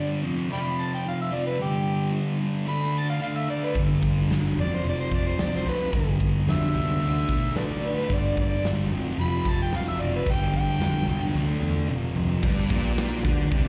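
Blues rock power trio with a southern rock edge, this raunchy, swaggering live fragment opens on a thick, double-tracked fuzz guitar riff joined by a gritty, amplified harmonica solo with tongue slaps and scooped notes, then a round, foam-muted bass and a huge arena kit with a fat snare and punchy kick enter at 3.8 seconds, and after a drum fill an overdriven tonewheel organ on a slow rotary speaker adds sustained chords at 12.4 seconds, all carried through the venue's PA into a recital hall's reverb.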